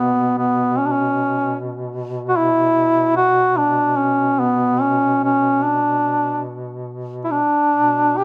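Close, detailed microphones and a light reverb frame this short, mournful fragment of Caucasian folk lament in B minor, moving in a rubato 3/4 at roughly 70-77 BPM. Up front, a warm duduk carries the longing melody between B3 and G4 with vibrato and scooped notes. Beneath it, a mellow, distant duduk sounds a roomy B2 drone, also shaded with vibrato and scooped notes, and both play throughout the 8.2 seconds.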